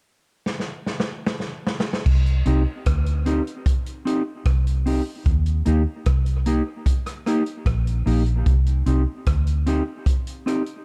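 A round, foam-muted electric bass sits up front in this heavy, hypnotic dub reggae excerpt at 75 BPM in C minor, entering at 2.1 seconds after a vintage drum kit with a punchy kick and rolled-off top opens with a fill from 0.5 seconds, while a mellow, clean electric guitar soaked in tape echo joins at 2.5 seconds over Cm and Eb chords in a dark, small-room production.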